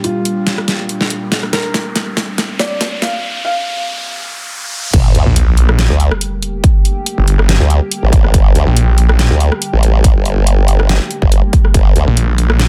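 Heavy wobble dubstep in G minor at 141 BPM with a half-time, swung feel, this chaotic, aggressive piece opens on a soft, boxy felt-muted upright piano melody with audible action noise and digital delay, over a morphing wavetable pad with chorus and reverb sitting in the background, an overdriven dubstep kit with a deep snare, rim clicks and hi-hats playing a fill, and a riser with a sub drop under a filter sweep, until the drop at 4.9 s brings in a punchy, up-front electronic kick and a formant-sweep wobble bass, joined moments later by a snarling, growling distorted saw bass, all in a dense, heavily limited, dry mix.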